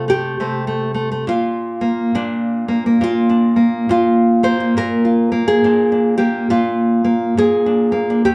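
Folk music for solo fingerstyle acoustic guitar, this short excerpt from a longer piece carries a hopeful, pastoral mood at an unhurried pace with a gentle swing. A single nylon-string guitar plays throughout the 8.3 seconds, fingerpicked with a full-bodied, deep classical tone and audible finger squeak. Its range stretches from Eb2 up to C5, giving the part both a rich low end and a clear upper reach. The harmony moves from a rootless F over C to Bb at 1.3 seconds. The guitar sits up front in the mix, though the small, wet room reverb places the listener a little further back, lending the performance an intimate, close-walled ambience.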